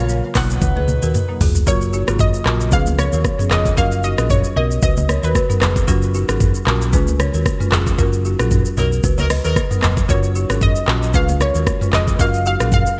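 A lightly swung afrobeats groove on an up-front electronic kit with a deep kick, metallic hats, handclaps, rim clicks, shaker and toms under gated reverb drives this breezy, joyful clip from a longer piece, where a round, punchy hollow-body bass and a woody marimba support a buzzing, dry balafon riff and very quiet, close congas, while a detuned, warbling analog pluck carries the melody with chorus and delay, a distant, roomy horn section adds brief second lines at the start and around 8.8 seconds, and a drum fill plus a band accent lift the bright 1980s-style digital production.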